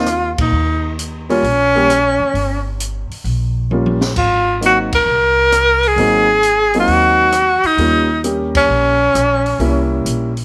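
Small-group swing and bop jazz at a relaxed, warm 132 BPM in Eb mixolydian, with a breathy, whispered tenor saxophone up front carrying the melody with vibrato, scooped notes and a slapback echo over short-sustained grand piano chords moving from Eb7 to Ab7, a woody, thumpy pizzicato upright bass and an acoustic drum kit with dark cymbals, a high-tuned snare and a boomy kick, punctuated by band accents and a drum fill at 3.7 seconds, set in a small room with light reverb.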